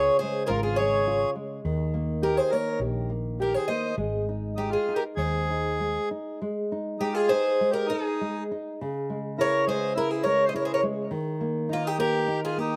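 A shimmering, octave-doubled twelve-string acoustic guitar leads this passionate, longing fado-style ballad, carrying the melody up front with a boxy, picked tone and a slapback echo. Beneath it, a reedy accordion traces a second line with the same slapback echo. A full-bodied, thumb-plucked nylon-string guitar supplies accompaniment with a deep classical character and audible finger squeak. A dark, round fretless electric bass with an amped, hollow-body colour anchors the low end until it drops out at 6.0 seconds. Set at 103 BPM in 4/4 with a rubato feel, the piece sits in Ab major, tuned to A4 = 441 Hz, and moves through Db, Eb, Ab5 and Dbm harmonies. This cut from a longer piece has a dry, open-air sound recorded outdoors.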